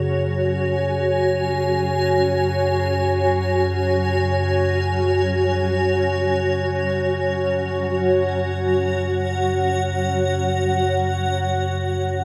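Dark ambient drone in free time, this excerpt from a longer piece feels unsettling and cavernous, tuned slightly above standard pitch at A4 = 441 Hz. A granular cloud pad holds sustained chords throughout the full 12.2 seconds, sitting up front with a blurred, detuned, evolving character that is bright yet full-bodied, softened by slow attacks and long releases and bathed in shimmer reverb. Beneath it, a deep rumbling drone built from triangle and sawtooth tones lends an ominous weight, its dark sound colored by a phaser. A bronze singing bowl, struck with a suede striker, adds a barely audible metallic ring with slow beating and a meditative quality. The whole is set in a cathedral-like space with a long 6.8-second decay, giving the sound a cavernous depth, and the harmony rests on F#5.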